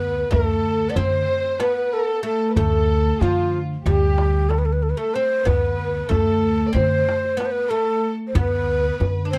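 A straight 9/8 pulse at 187 eighth-note beats per minute drives this hypnotic, longing Turkish makam ensemble piece in D makam huseyni, tuned to A4 = 443 Hz, with a clay-shell darbuka played with soft hands entering at 0.3 s, its deep, compressed and saturated sound set beside a woody pizzicato upright bass. A breathy, mellow ney carries the melody up front with a crisp attack and rolled-off highs, while a dark studio violin section, bowed sul tasto with light vibrato and a slapback echo, and a plectrum-plucked fretless oud with double strings fill out the second line. The dry, close 1970s-style studio sound has light reverb, and this 9.4-second passage is cut from a longer piece.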